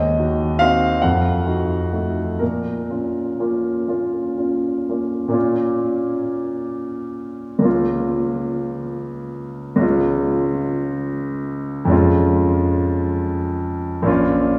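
Classical romantic nocturne for solo piano, nostalgic and tender, unfolding in 6/8 with free rubato as a warm concert grand with deep bass and long sustain sits up front in a resonant church reverb, its harmony easing from a dark diminished and dominant opening into the home minor and then brightening toward D-flat major before settling back, in this brief fragment cut from a longer piece.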